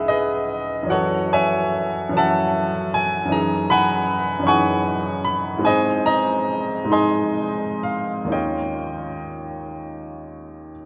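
Mysterious and wistful, this short passage of impressionist classical music is cut from a longer solo piano piece, moving in 6/8 with a free, rubato feel. A clear baby grand piano carries everything alone from 0.0 to 10.9 seconds, spanning from C#2 up to C#6 and sitting up front in the sound. Its tone is intimate and natural, with long sustain and the action noise of the instrument audible beneath the notes. Lush extended harmonies drift from Emaj9/C# through F#m9 and C#m11/F# to Abadd9, settling on Eb9 near the close. The piano is heard in a vast, echoing space, where a cathedral reverb with an RT60 of 5.4 s lets each chord hang and blur into the next.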